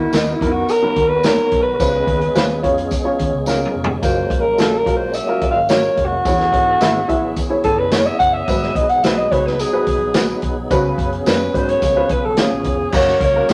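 Moderate studio reverb surrounds this uptempo 1960s-style soul cut at 108 BPM in F# major, where a growling, raspy alto saxophone with vibrato solos up front over a woody, slightly detuned upright piano, a lightly overdriven tonewheel organ with key click, slow rotary speaker and chorus vibrato, and a round, foam-muted electric bass. A swinging big-band drum kit with a punchy kick drives the danceable, uplifting groove and adds a fill at 3.5 seconds, while a jingly tambourine sits in the background. The chords move from Bmaj7 through G#m7 and C#7 before landing on F# at 12.9 seconds, when a smooth-topped horn section joins in the background.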